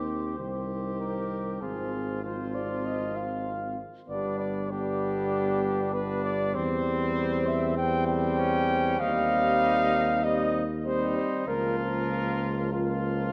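Classical brass quintet music, grave and heroic, moving at 97 BPM in a straight 4/4 through a 13.3-second fragment of a longer piece, with harmony passing from Cm through G and C/E to Bbm/Db. A dark cornet carries the melody up front with light vibrato, joined by a warm, distant and roomy trumpet on a second line. A vintage-toned French horn and a bright trombone sit in the background as accompaniment, a mellow, smooth-topped tuba anchors the bass up front, and a wet scoring-stage reverb with a 1.8-second decay surrounds the ensemble.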